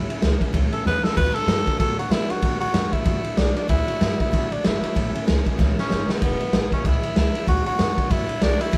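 A raspy, growling tenor saxophone takes the melody from the start over picked, bright acoustic guitar in the background and woody, thumpy pizzicato upright bass in this rollicking, upbeat rockabilly excerpt at 190 BPM with a swung feel, the gritty, punchy drum kit joining at 0.1 seconds. The sax, up front with vibrato, rides chords that move from A to D, back to A and on to E and D, while drum fills land at 0.8 and 5.6 seconds. Light reverb gives the sense of a band playing live together in one room.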